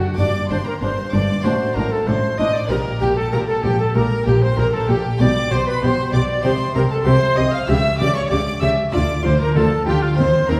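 Stormy and driving, this baroque-style concerto fragment sets a mellow, woody alto recorder melody against a high violin line and a second violin part, with a dark background viola section, a rich double bass and a cello section anchoring the bass, and a brilliant, dry harpsichord accompaniment, all heard from further back in a reverberant recital hall.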